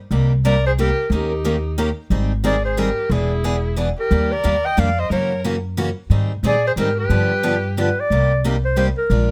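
A mellow clarinet carries the melody from 0.5 seconds, close-miked and up front, its subtone and vibrato shaping a jazz-style solo full of scooped notes. This is a swinging, virtuosic slice of acoustic string swing in the jazz manouche tradition, cut from a longer piece and moving at 180 BPM in 3/4 with a swung eighth-note feel in C minor. Beneath it, a bright, picked steel-string acoustic guitar with fresh strings plays the accompaniment from the start, while a dark, woody upright bass on gut strings supplies a thumpy pizzicato foundation, both sitting up front. A single bowed violin, warm, smooth and even with vibrato, adds a softer second line until 7.9 seconds. The harmony travels through chords such as Cm7, Abmaj7, E7 and F#7 before returning to Cm7 as a new section opens at 8.1 seconds. Close, detailed microphones and a light reverb keep the sound intimate and clear.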